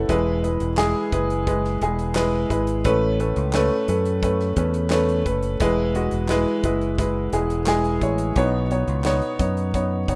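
A rough home-demo mix with light reverb carries this hopeful, anthemic piano-driven pop, cut from a longer piece in E major at 87 BPM in a straight 4/4. An intimate concert grand sits up front, its action noise audible and its low end deep, accompanying through E, Aadd9, E and Badd9 beside a direct, up-front fingered electric bass. An acoustic country kit, recorded in a small room, enters at 0.1 seconds with a punchy kick, medium-tuned snare, hi-hat and handclaps, sitting lower in the balance.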